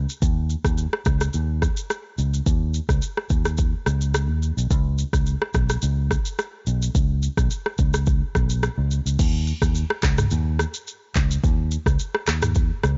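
Sultry and hypnotic, this afrobeats fragment moves at a straight 107 BPM in 4/4, built from just a fingered electric bass and an electronic afro-pop drum kit, both up front in a dry mix whose top end stops at 7.6 kHz. The dark, round, amped bass holds the low register between B1 and D#2. The produced drums bring a deep kick with rim clicks, handclaps, shaker, toms and crash cymbal, and the groove shifts into a new section at 9.2 seconds that carries through to 13.0 seconds.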